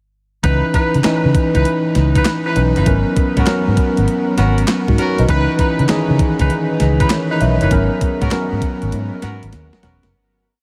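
New jack swing R&B with a confident, punchy feel and a hard 16th-note swing, built on a verse that moves between C#m9 and G#m11 and fades out from 7.7 seconds, closing on a drum fill at 9.5 seconds. A clean 12-bit drum machine drives a thumpy kick and a medium-tuned snare layered with handclaps and hi-hat, under a dark, round, foam-muted fingered bass playing a bouncy synth-funk line with muted ghost notes. An up-front tine electric piano pushes drop-2 chords with grace notes and short fills through its built-in speakers, while a distant, roomy horn section adds short syncopated jazz stabs with delay, both bathed in shimmer reverb within a dreamy mix soaked in huge ambient reverb.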